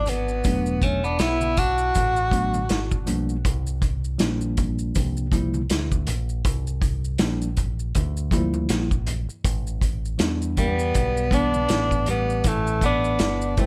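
Mellow and cool, this jazz-hop excerpt rides a swung groove from a punchy, pumping vintage drum kit, a round, dark dub-style picked bass and a worn, slightly out-of-tune tine electric piano carrying sus chords, with congas and maracas ringing in the background. A breathy tenor saxophone takes the solo melody with subtone, vibrato and scooped notes, set in plate reverb and tape echo, while a clean picked electric guitar adds a second line; both play from 0.0 to 3.1 seconds and return at 10.6 seconds. The whole mix sits in a light reverb, with the drums, bass and saxophone up front.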